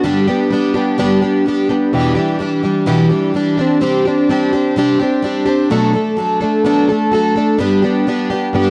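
A straight 4/4 pulse at 127 BPM carries this dusty, reflective rock fragment, cut from a longer piece and tuned to A4 = 436 Hz, where a lone picked, plugged-in twelve-string dreadnought sits up front with a bright, shimmering, octave-doubled tone spanning E2 to A4, moving through G, Em7, Csus2 and Bm7 before returning to G at 7.6 seconds, all bathed in a moderate echo-chamber reverb and the worn, warbling pitch drift of old cassette tape.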